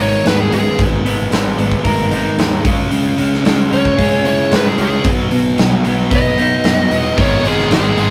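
A straight 4/4 pulse at 113 BPM drives this brooding quiet-loud alternative rock fragment in G# minor, where a dark, high-gain lead guitar solos over a sludgy overdriven guitar riff, a growly fuzz fingered bass and a big rock kit with a punchy kick and medium-tuned snare, while a slightly broken-up electric guitar picks harmonic-tremolo arpeggios until 7.2 s, when a bright high-gain distorted riff enters as the chords move from G#madd9 through C#m and B to a bare G#5, all set in a rough rehearsal-room sound with a stone room reverb and warm saturation.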